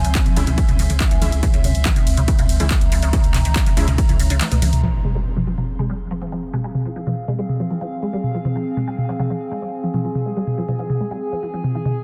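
A heavy, overdriven electronic kick pounds through the opening of this relentless, driving peak-time techno excerpt at 141 BPM in F harmonic minor, sounding over a Dbm chord alongside an up-front techno kit of handclaps, hi-hat, ride and toms, a deep saturated sine sub bass, aggressive detuned sawtooth rave stabs and a tense, swarming drone in the background. The kick drops out at 4.4 s for a drum fill, and at 4.8 s an electronic impact hits as the harmony moves to Fm, the sub bass and drone fall away, and a filter sweep runs across the synth arpeggio. Throughout, a squelchy, resonant blip pluck riff and a nostalgic, lo-fi tape-like pad, warbling through chorus and phaser, pump against the sidechain in a dense, heavily limited master with light reverb.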